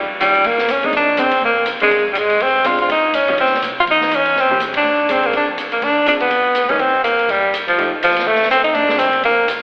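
A brisk swing at 246 BPM in 4/4 drives this warm small-group jazz fragment in Bb mixolydian, a short slice of a longer piece captured live through a venue's PA with a lush hall reverb and a telephone-like tint. Up front, a clear tenor saxophone carries the melody with vibrato and scooped notes, both it and the dark, compressed hollow-body guitar comping beneath carrying a slapback echo, while a woody, growly pizzicato upright bass sits in the background. A distant, roomy drum kit with dark cymbals, a high-tuned snare and a boomy kick keeps time on hi-hat, ride and rim clicks, and the band hits an accent together at 4.7 seconds.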